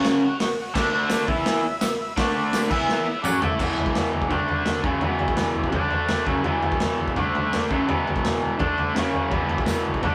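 A rough rehearsal-room recording with moderate reverb captures this raw, rowdy garage rock excerpt in straight 4/4, led by a bright, double-tracked electric guitar riff with picked overdrive and a gritty, saturated drum kit with a punchy kick and dark cymbals, both up front. A buzzy vintage combo organ with light vibrato holds sustained chords in the background, while a jingly, close tambourine sits behind it from 1.1 to 3.3 s and returns briefly at 9.7 s. At 2.9 s the drums and organ both break into a fill before the next section begins at 3.6 s.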